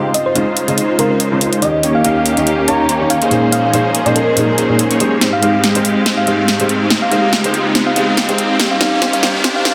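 Future bass at 142 BPM with a half-time, lightly swung feel, this bright, euphoric build-up cut from a longer piece sets huge, detuned supersaw chords under a filter sweep, soft felt-muted upright piano with audible action noise and tape echo, and bowed studio strings with light vibrato and vintage sampler grit, while a round, tine-like synth pluck carries the melody through chorus and cassette tape coloring, a punchy layered dance kit with metallic hats builds into a drum fill from 5.2 seconds, a background riser climbs from 1.6 seconds, and a lush hall reverb surrounds a dense, heavily limited master as the chords move from Dbmaj9 through Eb7, Bbm11 and Abmaj7.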